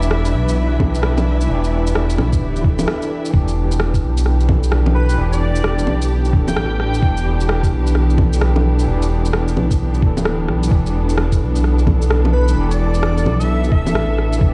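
A deep, rumbling detuned saw bass sits up front in this rainy, melancholic future garage piece at 130 BPM, its tube-saturated tone beating and pumping against the kick in E minor over an Em7 chord. A gritty, barky tine electric piano, overdriven through a combo amp, carries the accompaniment with medium tremolo, analog delay and the same sidechain pumping. Alongside it, a dark chamber string section holds bowed, soft-attack chords with vibrato and a smooth top, also pumping. Layered electronic shaker, rim click and bongos add a swung sixteenth-note lilt from the very start, a very quiet reversed, granular texture swells in at 0.4 seconds, and a muffled, thumpy, pitched-down kick arrives at 0.8 seconds, the percussion set in a small room reverb. After a brief break, an airy, dreamy lead with chorus, vibrato and analog delay floats in at 4.9 seconds and returns near the close, while the whole mix sounds as if played on a big sound system in a bare room, bathed in large studio reverb.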